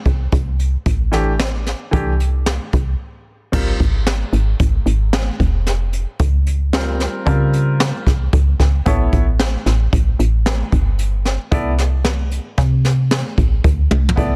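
A round, woody FM bass anchors this bright, intricate progressive band excerpt in 5/4 alongside an up-front brushed jazz kit with dark cymbals, a punchy kick and a high-tuned snare carrying soft clipping, while a clear but worn grand piano enters at 1.1 seconds to comp over Db, Aadd9 and Csus2 harmonies after a brief break at 3.0 seconds, closing on a drum fill at 13.9 seconds within a dense, heavily limited studio mix.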